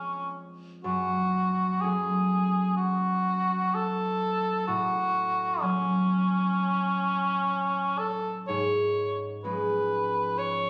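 Captured on a phone in the room, this passage sits in a moderate recital-hall reverb that gives both instruments a soft halo. It is a romantic classical duo in F# minor at a slow 63 BPM in 4/4, played with a rubato feel whose mood is elegiac and yearning. The warm cor anglais carries the melody up front between C#4 and C#5, with light vibrato, a soft attack and a present, classical solo voice. Beneath it, the concert harp is fingerpicked in the lower register from E#2 to C#4, its ringing acoustic tone also close and forward. The harmony moves from C#7/E# to F#m at 0.8 seconds, then F#m/A and finally C#7/G# at 8.5 seconds. Both instruments play together throughout this short cut from a longer piece, lasting 10.7 seconds.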